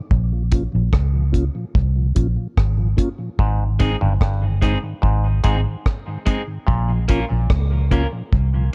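Dub reggae in Bb dorian at 73 BPM, this short cut from a longer piece moves with a deep, heavy, straight 4/4 feel over a dark studio reverb. A foam-muted vintage electric bass sits up front, round and punchy, while a dry reggae kit with a tight kick, hi-hat and rim click keeps its top end rolled off and smooth. A mellow tonewheel organ adds soft, flute-like chords through a slow rotary speaker, and these three parts carry the opening break over Bbm before the harmony shifts to Ab at 3.4 seconds. That same moment brings in an overdriven clav riff, hollow and nasal through a combo amp and trailed by dub echo, joined at 3.8 seconds by a picked electric guitar at the edge of break-up, compressed and lightly gritty, with its own dub echo. The chord returns to Bbm at 6.7 seconds, and shortly after the clav drops out, leaving bass, drums, organ and guitar to close the passage.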